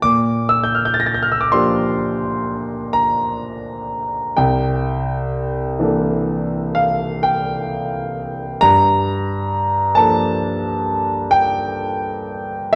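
A polished grand piano sits up front as the sole voice in this hazy, dreamy impressionist classical excerpt, moving through Bb lydian in a slow 9/8 at 43 BPM with uneven, rubato phrasing. It spans from C2 up to Bb6, drifting from a Bb6 chord to C13 at 4.4 seconds and Gm9 at 8.6 seconds. A wet scoring stage reverb and the worn, warbling pitch drift of old cassette tape lend the present piano tone a softly faded cast.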